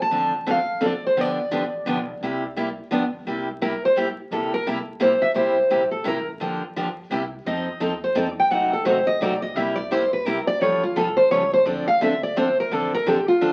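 Swinging and charming, this snippet of jazz manouche in 3/4 sets two up-front picked steel-string acoustic guitars, one warm and one bright with audible finger squeak, over a woody, thumpy upright bass on gut strings sitting dark in the background, with the lead guitar stepping into a solo at 3.3 seconds as the chords travel through Dm7, G7, C7, F#dim7 and A7alt, all wrapped in a wet club reverb and the crackle of a very old 78 rpm record.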